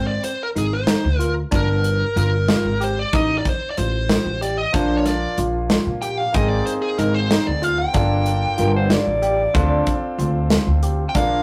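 A smooth, overdriven lead guitar solos across this bright, intricate progressive instrumental fragment in 5/8 at 187 BPM (eighths), over bell-like tine electric piano arpeggios with phaser, a woody, growly pizzicato upright bass and a tight, up-front acoustic drum kit, while a brilliant concert grand joins with accompaniment at 4.7 seconds and a breathy, close-miked alto saxophone adds a brief vibrato second line at 8.6 seconds, all in a rough rehearsal-room sound with tube saturation and moderate reverb, moving through chords such as Gm7, Adim and Abadd9.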